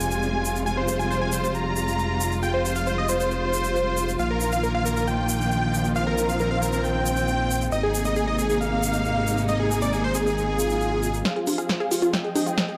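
A moderate digital room sheen surrounds this emotional, bittersweet uplifting trance excerpt at 136 BPM in F minor, where a huge, euphoric supersaw lead carries the melody up front with sidechain pumping, a low-pass filter and dub echo over bowed studio strings with vibrato and portamento, a fat, tube-saturated analog bass and a grainy egg shaker, moving through Fmadd9, Bbsus4 and Abadd9. A background electronic swell arrives at 10.6 seconds. At 11.3 seconds a build-up begins as a punchy analog drum machine plays a fill on congas, hi-hat and snare alongside a very quiet electronic kick, while a round, chorused analog pluck arpeggio with a filter sweep and a lush unison pluck second line join the mix.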